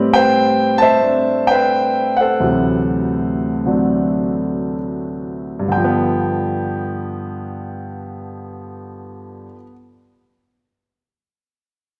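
Sophisticated and swinging, this short solo jazz excerpt features a concert grand piano with deep bass and a natural, up-front presence, playing with a loose rubato feel that slows through its first 5.7 seconds as the harmony moves from Am9 to D9 before settling on G7, all bathed in the wet reverb of a recital hall.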